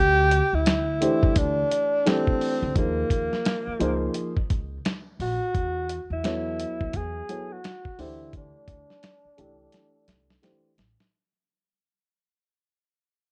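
Worn, warbling cassette tape and a small-room ambience frame this nocturnal, cool jazz-hop excerpt at 86 BPM with a swung hip hop feel, where a breathy tenor saxophone with subtone, vibrato and scooped notes carries the melody up front over a woody, growly pizzicato upright bass, a gritty, compressed sampler-style drum kit with a thumpy kick that plays a fill from 9.7 seconds, and a dark, boxy baby grand piano entering at 1.0 seconds, while a fade-out and filter sweep run throughout.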